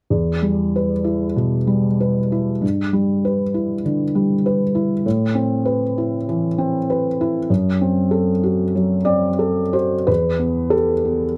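A felt-muted upright piano plays alone throughout this brief, melancholic and wistful neoclassical minimalist fragment, cut from a longer piece and tuned to A4 = 445 Hz, its mellow, intimate tone sitting up front under close, detailed microphones with light reverb as it moves in rubato 4/4 across a range of E2 to D5 through Em, G6, Amadd9 and F#dim before settling back on Em at 10.1 seconds.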